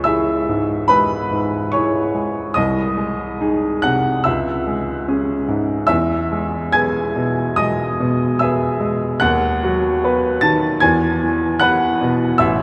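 A clear, woody upright piano with a vintage character sits up front in this passionate, stormy romantic character piece for solo piano. Cut from a longer work, it moves in a rubato 4/4 around 72 BPM in C# minor, tuned to A4 = 441 Hz, ranging from A1 to A6 as the harmony passes from C#m through G#/B# and back, then settles on E at 5.9 s before moving through B/D# and returning to E. A wet cathedral reverb with a 6.2 s decay places the instrument in a vast, echoing space.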